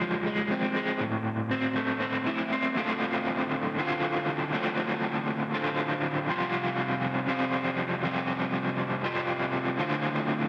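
A crunchy, dark overdriven electric guitar plays alone from the start, picked and double-tracked up front with a tremolo effect, setting a mysterious, trippy rock mood in an odd 7/8 metre at 239 BPM (counted in eighths) in D minor, tuned to A4 = 441 Hz. The opening moves from Fm to Am before a new section arrives at 2.8 s, settling on Dm7 and shifting to Fsus2 and back to Dm7, with the guitar ranging from D2 to F4. A moderate echo chamber reverb gives this excerpt from a longer piece a haunting depth.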